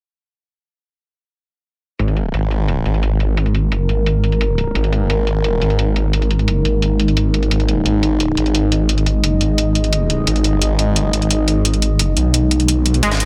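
Dark and futuristic, this excerpt of technical drum and bass opens at 2.0 seconds with a snarling, overdriven saw bass growling up front beneath metallic, low-passed electronic hi-hats that sound re-recorded in a small room, while a deep, warbling ambient pad with chorus and its own reverb joins at 3.3 seconds to hold moody sustained chords. Only in the last instant, at 13.0 seconds, does a bright analog pluck flash a chorused arpeggio note as a gritty, compressed breakbeat kit adds high-passed hats and a high-tuned snare. The whole mix sits in a light digital ambience.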